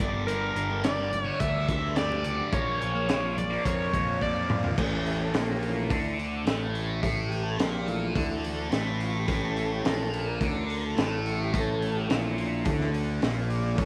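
A bold, retro octave-doubled lead with a sawtooth edge, ring modulation, chorus and tape echo carries the melody up front over a hypnotic, mysterious psychedelic rock groove until 4.6 seconds. A bright, double-tracked fuzz guitar riff with phaser, a round, punchy overdriven fuzz bass and a gritty, saturated breakbeat kit with dark cymbals and a high-tuned snare drive steadily beneath, while thick-skinned congas sit very quietly in the mix until 4.8 seconds, after a drum fill at 4.2 seconds. From 4.8 seconds the mellow, heavily vibrato-laden combo organ, until then sustaining chords in the background, takes a solo in this fragment cut from a longer piece, all set in a light small-room reverb.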